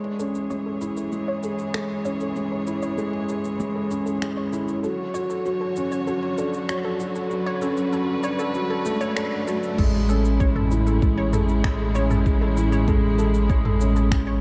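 A felt-muted upright piano sits up front, playing a soft, mellow riff with audible action noise and a touch of delay, giving this tender, luminous piano and strings electronica fragment its intimate core. Beneath it, a muted chamber string section holds veiled, con sordino chords with gentle vibrato and a smooth top, moving from Amaj7 to Dmaj7 in A major at 97 BPM in a straight 4/4. An analog pluck traces round, decaying arpeggios through chorus, delay, sidechain pumping and a vintage 12-bit sampler grit, its tone filtered in a sweep across the build-up. A layered deep house kit of crash cymbal, finger snaps, shaker and toms, all high-passed, runs beneath them, and a very quiet riser appears from 3.5 seconds. At the drop at 9.8 seconds a deep electronic kick and a dark, detuned saw bass arrive together, the bass rumbling and beating under sidechain pumping as the harmony returns to Amaj7. 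A lush hall reverb and a dark, warm production wrap the piece in a gentle glow.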